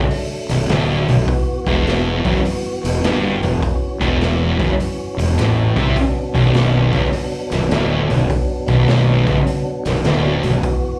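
Hypnotic and brooding, this swung stoner and doom metal fragment from a live club set pairs two thick, distorted fuzz guitars on a picked riff, one sitting further back, with a bright, growly overdriven fingered bass and a gritty, boomy garage drum kit in a small pumping room, while a fat tonewheel organ holds sustained chords in the background through overdrive and a fast rotary speaker, the performance captured through the venue's PA with club reverb as the harmony moves from Bm to E5 at 1.3 seconds and back to Bm at 6.0 seconds.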